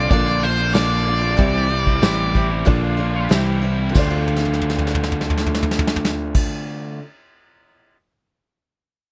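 A straight 4/4 pulse from an up-front brushed drum kit with dark cymbals and a punchy kick carries this wistful, reflective folk and heartland rock excerpt, where a nasal, overdriven lead guitar with a parked wah plays a brief melody until 3.3 seconds over a picked steel-string acoustic guitar in the background, a raw, double-tracked garage guitar riff, a round electric bass, a woody, very quiet upright piano and a jingly tambourine, while the chords move between Bb and C before reaching Dm7 at 4.0 seconds and a drum fill begins at 4.3 seconds, with little reverb on the recording.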